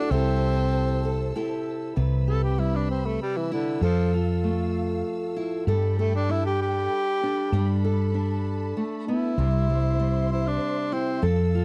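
A dry, close recording with little reverb gives this short cut from a longer acoustic folk piece the intimate feel of a 1970s studio session. At 97 BPM in a straight 3/4, the music sits in C major and carries a nostalgic, hopeful mood, moving through C6, Cmaj7, Fmaj7 and Gadd9 before settling on C. A clear tenor saxophone, played with vibrato in a classical style, carries the melody up front and takes a solo from 2.0 seconds to the end. Fingerpicked steel-string acoustic guitar supplies bright accompaniment, its fresh strings and finger squeaks audible in the close sound. Underneath, a woody fretless electric bass entering at 0.1 seconds is the loudest part, growly, round and punchy. A lush symphonic string section, bowed with a soft attack and expressive vibrato, holds sustained chords high above at a lower level.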